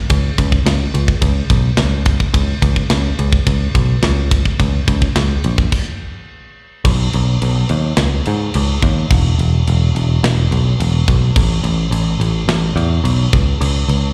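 Heavy metal excerpt with an aggressive, epic mood, carried by a growly, bright picked electric bass with a foam-muted bite and a tight metal drum kit whose gritty, saturated sound and rolled-off top sit up front alongside the bass, with crash, ride, snare and kick. The band drives together until a stop at 5.7 seconds, then returns at 6.8 seconds in half time for the remainder. The performance sounds like a live gig heard through the venue's PA, set in the reverb of a recital hall.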